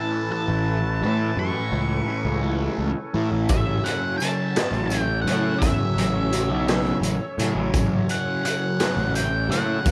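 Psychedelic rock in a hypnotic, kaleidoscopic 6/8, cut from a longer piece. A double-tracked fuzz guitar riff with phaser and a dark, tape-echoed octave-fuzz lead melody sit over airy, vibrato-laden sustained chords from a small flute group, with a round, overdriven picked bass entering at 0.5 s. At 3.5 s a gritty, up-front garage drum kit with a boomy kick and high-tuned snare arrives alongside a faint, jingly tambourine, all in a small room.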